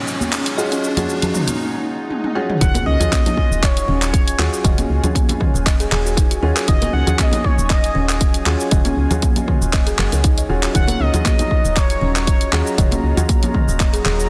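Hypnotic and warm, this afro house excerpt in Eb minor moves at 118 BPM with a light 16th-note swing, opening on a dark, detuned analog pad holding an Ebm11 chord, muted felt piano stabs with audible action noise, airy kalimba arpeggios in the background, ringing close congas and a house kit of handclaps, hi-hat, shaker and toms, while a riser and swell build toward a drum fill. At 2.6 seconds the drop lands with an electronic impact, a punchy, up-front kick, a round, woody FM bass and a smooth, nasal synth lead carrying the melody with vibrato, lush chorus, cassette-tape color and delay until 12.5 seconds. The pad, piano, kalimba and bass pump against the sidechain in a dense, heavily limited mix with light reverb.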